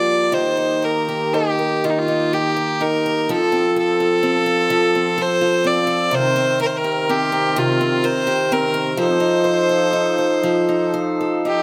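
Close, detailed microphones capture this fragment of a Celtic slow air inside a moderate recital hall, where a reverb of about 1.6 seconds surrounds a longing, haunting performance in a free, rubato three-time. A single bowed fiddle carries the melody up front with a biting, nasal, earthy tone, while a bright, boxy picked acoustic archtop guitar supplies the accompaniment and a reedy, breathing hand-pumped harmonium holds sustained chords further back. Across the 11.6 seconds the harmony moves from Eb to F and then settles on Cm7.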